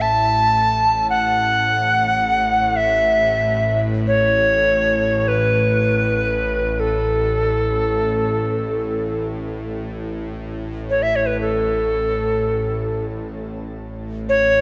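World meditative music in free time, this calm, peaceful fragment of a longer piece sits in A major pentatonic. A reedy, airy cedar flute carries the melody up front from start to finish with vibrato and tongued notes, its woody tone lifted by a shimmer reverb. Beneath it a string-like, detuned sawtooth drone with a tense edge, a noise layer and slow attack sustains low throughout, all set in a wet concert-hall reverb within a dark, warm production.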